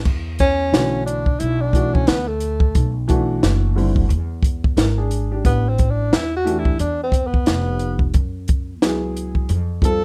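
A rough home-demo sound with light reverb frames this mellow, smoky jazz-hop excerpt, cut from a longer hip hop piece at 89 BPM in 4/4 with a 60% swing on the sixteenths. A woody, thumpy pizzicato upright bass on steel strings opens the excerpt, staying low and close. At 0.1 seconds a compact cocktail drum kit joins, sitting up front and dry, with its punchy kick, high-tuned snare, hi-hat and dark crash cymbal. From 0.4 seconds a breathy tenor saxophone takes the solo, playing in a jazz style with subtone, vibrato, scooped notes and a smooth top end. At 0.7 seconds a worn, boxy grand piano adds quiet, intimate accompaniment, its audible action noise giving it a homely character. The harmony drifts through Esus2, Bm7, A#7#11, Asus2 and F#sus2 before settling toward F.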